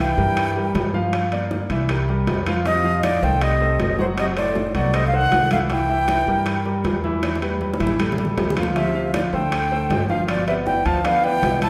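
A breathy, reedy concert flute carries the melody up front over a dark, whispered trombone line in the background, clear grand piano accompaniment and a woody, growly pizzicato upright bass from the start, with soft-handed congas and bongos joining at 0.2 seconds and ringing, distant timbales at 0.4 seconds in this lively, danceable Afro-Cuban jazz passage at 157 BPM in C mixolydian, where a drum fill arrives at 7.2 seconds and a recital-hall reverb surrounds the whole ensemble.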